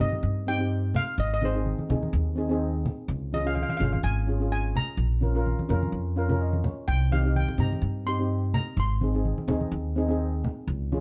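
A bright, shimmering lead steel pan struck with hard rubber sticks carries the melody in this sunny, festive calypso clip, played close and dry with a fill from 5.9 to 6.9 seconds before it stops at 9.2 seconds. Beneath it, double-second pans on soft rubber sticks give mellow, boxy accompaniment over a Cm–Ab–Db–Bbm–Cm7–Ab progression in Ab major. A woody pizzicato upright bass sits up front, and damped, low-tuned congas played with soft hands enter at 0.1 seconds, all moving at 126 BPM with a light swing inside a dark production with light reverb.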